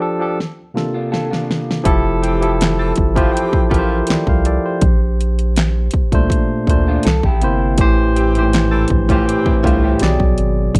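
A dark, warm production with light reverb frames this soulful, smooth neo-soul and R&B cut, taken from a longer piece and played in a lightly swung 4/4. A barky, clean tine electric piano sits up front from the start, carrying the chords, and the pop drum kit joins with a fill through the opening break, its punchy kick, fat snare, metallic hats and handclaps sounding electronic and layered. At 1.9 seconds a round, deep analog bass arrives, with a fast attack and a sustained, wave-folded tone, as the harmony settles onto a major ninth chord. A bright saxophone section adds jazz-style stabs with vibrato, softer in the mix. A slightly broken-up, lo-fi electric guitar through a small old amp plays a picked second line in brief spots, bathed in spring reverb, first during the opening break and again later on. The chords move through major ninths, a dominant seventh and a minor seventh, closing on a minor sixth chord.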